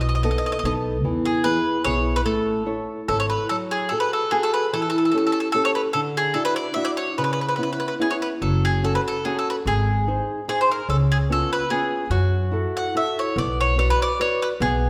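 Romantic and wistful, this swung Italian folk serenade in 3/4 at 147 BPM moves from A major into F# minor at 3.5 s, with a bright, picked bowl-back mandolin carrying the double-string melody up front over a small, warm, fingerpicked nylon-string guitar, while a woody pizzicato upright bass plays until 3.4 s and returns at 8.4 s, all set in a moderate scoring-stage reverb in this short fragment of a longer piece.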